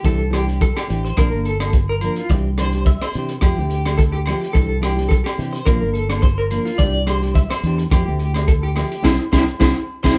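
Joyful and danceable, this highlife guitar band passage moves at 107 BPM in C mixolydian with a light swing, cycling through Cadd9, Bb and Fadd9 chords. A bright, twangy electric guitar through a small old amp plays tremolo arpeggios over a fingerpicked flamenco guitar with fresh strings. A round, dark fingered electric bass sits beneath, a crunchy, saturated breakbeat kit with punchy kick and high-tuned snare sits up front, and ringing agogo bells join at 0.3 s. The band plays live in one room with moderate reverb and hits a shared accent from 9.0 s before the cut from the longer piece.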